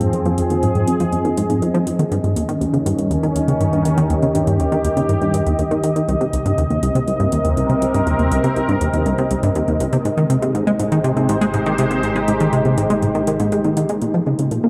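A steady, straight 4/4 pulse at 121 BPM drives this mysterious, cosmic stretch of ambient, sequencer-driven space music, cut from a longer piece, where a punchy, funky analog bass riff with a plucky, wave-folded bite and tape echo sits up front beside a sweeping, resonant pad of detuned chorused chords, while a pulse-width-modulated analog drone with ring modulation hums in the background and electronic hi-hat and congas with metallic hats and tape echo tick along, all bathed in a vast cathedral reverb over Fm7, Eb7, Cm7 and Abmaj7 before touching Bbm at 14.0 seconds.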